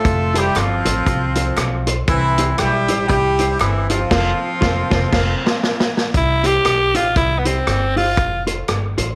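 Bouncy and joyful, this short ska excerpt moves at 118 BPM in 4/4 with a lightly swung eighth-note feel in C major, cycling between F and C chords. A clear, punchy horn section carries the melody up front in octave doubling with light vibrato, backed by a vintage drum kit with dark cymbals, rim clicks, a medium-tuned snare and a punchy kick, plus a woody pizzicato upright bass. A clean, fingered electric guitar sits in the background as mellow accompaniment, and a very quiet, crisp group handclap adds percussion until 3.7 s. A drum fill and a band accent mark the close of the opening section, and the horns drop out at 5.9 s. From 6.2 s a raspy, gritty alto saxophone takes a forceful, vibrato-laden solo up front, all set in a small room with moderate spring reverb and a faint mains hum.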